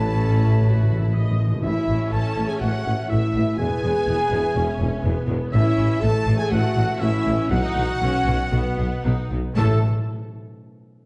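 Cinematic heroic adventure film score in A major at 121 BPM, soaring and triumphant, cut from a longer piece. A studio violin section carries the melody in the background over a chamber violin section, clear oboe, a hollow, very quiet flute group, and a brief mellow clarinet that stops at 1.3 s; a lush viola section, mellow French horn chords, ringing fingerpicked concert harp arpeggios, and a low end of tuba, cellos and double basses fill out the sound. Hard-mallet timpani open with a fill before falling silent at 2.3 s, returning at 9.6 s once the tempo has slowed into the final A chord, all set in a dark production with a wet recital hall reverb.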